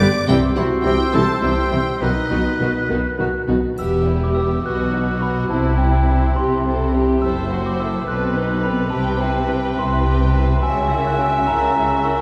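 Heard from further back in a reverberant scoring stage, this mischievous, whimsical film cue in 6/8 is cut from a longer piece. A rich, expressive violin section carries the tune with vibrato, while a second, more focused violin line and smooth-topped violas fill the middle, and the double basses sit up front beneath a distant cello section. In the opening bars, an airy, hollow flute, a clear oboe, a close-miked clarinet and a mellow French horn section add brief woodwind colour and sustained chords before falling away. At 3.8 seconds a soft, bell-like glockenspiel played with rubber mallets joins the melody with a dry, ringing tone, and a faint triangle sparkles briefly in the background. The harmony moves through minor and half-diminished chords toward a dominant colour, giving the quirky cue a sly, storybook tension.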